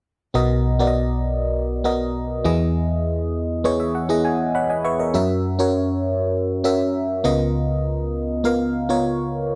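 Pop in a nostalgic, uplifting mood, this short passage cut from a longer piece features a solo FM electric piano, glassy with a bell-like attack, a noise layer and decaying notes, treated with chorus and phaser and placed up front, moving through Bmaj7, Emaj7, F#7 and C#13 with a fill from 3.3 to 5.1 seconds, all captured in a dry, close 1970s-style studio sound with light reverb.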